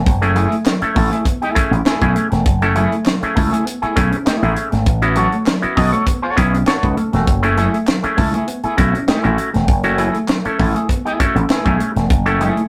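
A straight 4/4 funk groove at 100 BPM in F# minor drives this hypnotic, cool fragment cut from a longer piece, with a tight acoustic drum kit up front pairing a high-tuned snare and tight kick with hi-hat. Punchy slap bass with an envelope filter sits equally forward, bright and amped, while an up-front auto-wah clav adds nasal, stringy stabs through a combo amp and breaks into a fill from 10.9 to 12.1 seconds. A twangy, picked electric guitar with an envelope filter and harmonic tremolo supplies accompaniment, and a dark, compressed electric guitar played with the fingers holds a low riff in the background. A very quiet group handclap, hollow and human, enters at 0.7 seconds. The harmony moves from F#m9 to A6 and back, all within a rough rehearsal-room sound carried by a small room reverb.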